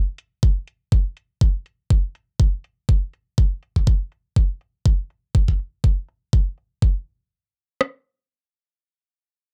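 This minimal techno cut from a longer piece moves at 122 BPM in 4/4 with a light 16th-note swing, giving it a cool, hypnotic pulse. Faint, low-pass-filtered electronic hi-hats with a metallic, tape-warm edge open at 0.2 seconds and are joined at 0.4 seconds by an up-front garage drum kit with a knocking kick and rim click. The hats drop out at 6.7 seconds, while a filter sweep runs over the drums through the opening stretch. The sound is dry and gritty with transformer saturation, and the kit carries on alone until 7.9 seconds.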